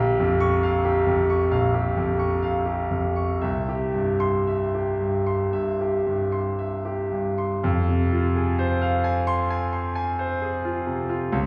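Bittersweet and stormy, this brief passage, cut from a longer romantic character piece for solo piano in F minor, moves with a slow, rubato pulse around 56-69 BPM in 4/4. A bright, brilliant concert grand spans deep bass to a ringing upper register, its open tone and long sustain sitting up front even as the hall's lush reverb places the listener further back in the room. The harmony moves from Gm7b5 over Bb through C before arriving on F minor at 7.6 seconds as a new section begins.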